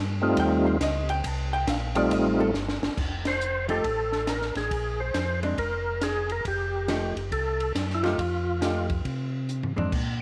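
A moderate echo-chamber reverb and small-room ambience surround this bluesy, greasy soul jazz organ trio excerpt. It swings in 4/4 at 138 BPM in F mixolydian, with a mellow, round tonewheel organ holding down the bass line through a slow rotary speaker, its key click and vibrato up front. A second tonewheel organ carries the melody with a warm, full, lightly overdriven and percussive tone, adding chorus vibrato, slow rotary speaker and tape echo. A dark, clean, compressed hollow-body electric jazz guitar takes a picked solo through the opening three seconds before settling into accompaniment. A compact cocktail drum kit, with its high-tuned snare, punchy kick and rolled-off top, plays fills at 2.5 seconds and 9.5 seconds. The band hits an accent at 3.2 seconds as the harmony moves from F9 through F and Bb7sus2 before returning to F9.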